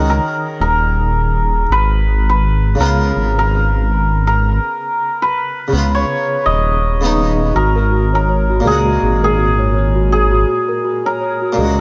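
A shimmering hammered dulcimer melody with dub echo opens this hypnotic, dark trip hop excerpt at 82 BPM with a swung 16th feel, over a brilliant, close-miked harpsichord with harmonic tremolo and an up-front, rumbling detuned saw bass moving through D#m7, C#7/G# and F#add9/G#, before a delicate, bell-like celesta adds tape-echoed arpeggios from 7.5 seconds, all set in a small room ambience.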